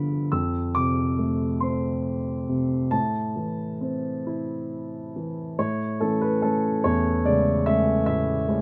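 Swaying in a lilting six-eight with a free, breathing rubato, this short excerpt from a longer classical piece carries a wistful, reflective mood at a slow, unhurried pace. A single baby grand piano plays alone throughout, its dark, mellow tone carrying a smooth, vintage character and a long sustain that lets each sonority linger. The lyrical solo line and its harmonies span the keyboard from E2 up to E6. The opening passage moves through brooding chords before a second section arrives at 5.6 s, where the harmony brightens onto a major-seventh color that lends a tender lift. The piano sits up front in a light reverb, and the tuning rests slightly below standard concert pitch.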